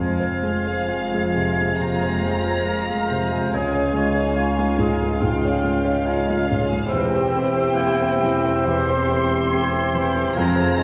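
Steeped in a reverberant recital-hall ambience, this tragic, brooding excerpt of a romantic movement for piano and orchestra unfolds with rubato in 4/4 as an up-front concert grand with a deep bass shares the melody with a veiled, con sordino chamber violin section, while a clear solo clarinet, an airy, hollow flute ensemble, a distant mellow oboe and a second, soft-attacked muted violin section weave second lines over a background bassoon, a very quiet viola section and sustained French horn chords, with cello and double bass sections anchoring the bass and hard-mallet timpani sounding only in the first 1.3 seconds over chords moving from Fm to Db to C/E.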